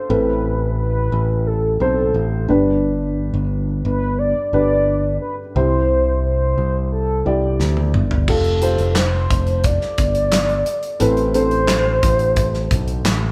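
Heard in a moderately reverberant large studio with the band playing live in one room, this hopeful, uplifting piano-driven pop excerpt at 88 BPM in 4/4 pairs a dark, woody upright piano with a mellow, horn-like lead synth carrying the melody through detuned sawtooth tone, chorus and vibrato, over a direct, up-front picked electric bass, while an acoustic studio drum kit with a punchy kick and bright cymbals enters at 7.6 s with a fill that leads into the second section at 8.3 s.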